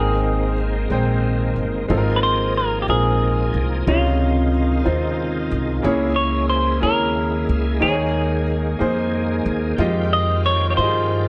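A slow, reverent gospel passage in a straight 6/8 opens with all four parts sounding together: a dark, clean semi-hollow electric guitar carries the melody with fingered notes, set up front over a clear grand piano whose intimate accompaniment lets a little action noise through. Beneath them, a woody pizzicato upright bass sits close to the listener, while a bright tonewheel organ holds sustained chords with a full, shouting tone, lightly overdriven and stirred by a fast rotary speaker and chorus vibrato. The soulful harmony moves from Abmaj9 through Ab69 and Dbmaj9 to a poignant Dbm6, then leans on Eb7sus4 before settling on Fm9 near 9.8 seconds. A moderate echo chamber reverb gives the ensemble a roomy, churchlike glow. This brief passage of about 11.3 seconds is cut from a longer piece.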